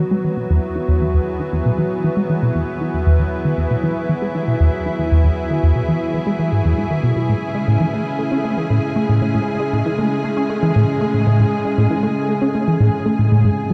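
Expansive and cosmic, this fragment of sequencer-driven ambient space music rests on a lush, detuned unison pad holding sustained chords that move from Eadd9 to Amaj7 at 7.3 seconds, while a punchy, funky analog bass riff with a fast pluck and decaying tail sits up front, coloured by subtle chorus and tape echo. At 6.2 seconds a very quiet, breathy, wind-like tuned noise layer drifts in beneath them. A long plate reverb and a dark production give the whole piece a deep, spacious glow.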